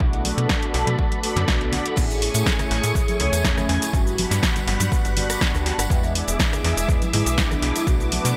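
Funky and joyful, this filtered disco house excerpt in A major runs at 122 BPM in a straight 4/4, opening with a filter sweep over Bm7 before the drop lands at 2.0 seconds and moves through Amaj7, Gmaj7 and E7. A punchy, tape-warm analog drum machine sits up front with snare, rim click, hi-hat, cabasa and crash alongside an electronic kick, while snappy slap-like FM bass with tube saturation, bright dry tambourine and congas in the background, and pumping, filtered layers of round, brassy synth brass and lush, vintage string machine chords fill out the harmony. The echo-heavy mix carries light digital ambience, with tape echo on the brass, percussion and drum machine, plus chorus and phaser on the brass and ensemble chorus on the strings.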